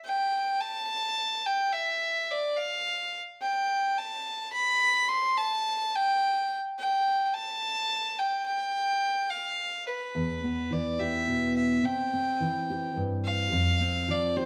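Folk in a straight 6/8 at 71 BPM, this uplifting, nostalgic fragment from a longer piece opens with a lone bowed fiddle, nasal and reedy with a gut-string tone, carrying the melody up front before a full-bodied fingerpicked steel-string acoustic guitar enters at 10.2 seconds beneath it over Em, C and F5, the two played live together in a stone room with moderate reverb.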